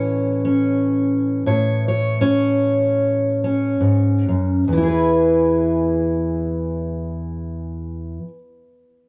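A single fingerpicked steel-string acoustic guitar opens this short folk passage, cut from a longer piece, resting on an A chord. Over the first 4.7 seconds the pace slows down, with the tempo moving between 66 and 88 BPM in 4/4 and a light swing on the eighth notes. At 4.7 seconds the harmony settles onto E, the home key of E major, and a second phrase carries on until the guitar stops at 8.4 seconds. The dreadnought's fresh strings give a full-bodied, warm tone across its range from E2 to C#5, and it sits up front in the mix. The dry, close studio sound, with a touch of studio reverb and a 1970s character, suits the nostalgic yet hopeful mood.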